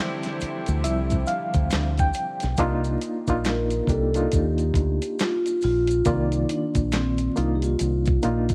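R&B and neo-soul with a sultry late-night mood at 69 BPM in a swung 4/4 and C dorian, where a reedy electric piano with fast tremolo carries the accompaniment throughout, opening beside a thick, detuned, chorused unison pad and clear saxophone-section stabs that both drop out within the first few seconds, while a gritty, compressed sampler-style drum kit with thumpy kick, fat snare, hi-hat and handclaps, background maracas and finger snaps, and a round, punchy dub bass settle in, before a mellow soft-mallet vibraphone melody with slapback echo enters at 3.5 seconds over light small-room reverb and vinyl crackle.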